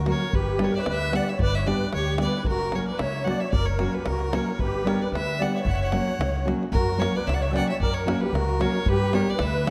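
Virtuosic and restless, this short excerpt of Balkan wedding-band folk moves in a lightly swung 2/4. A single clear fiddle carries the melody with smooth, even bowing and light vibrato. Beneath it, a reedy musette accordion plays a second line, shimmering with its wet tuning and a slapback echo. A fingerpicked nylon-string guitar in classical style supplies the accompaniment, while a woody pizzicato upright bass with steel strings holds the low end, and a deep davul sits close and dry in the background. The harmony rocks between G and F# under a dark, warm production set in a moderate concert hall reverb.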